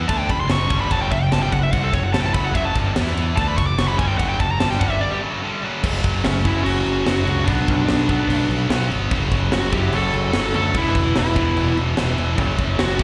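In a straight 4/4 drive, this dark, heavy metal excerpt pairs two distorted rhythm guitars, one heavy and one scooped, with slapback echo in the background, while a growling, overdriven fingered bass sits up front and a tight drum kit cracks a high-tuned snare against bright cymbals. A bright high-gain lead guitar solos through the opening with slapback echo and digital delay, reaching a break at 5.0 seconds before the harmony moves through F#m, Bm and E5; a mellower second lead line joins at 6.2 seconds. An overdriven, double-tracked guitar slips in at 12.4 seconds, and the whole sounds like a live gig heard through the venue's PA, with a recital-hall ambience.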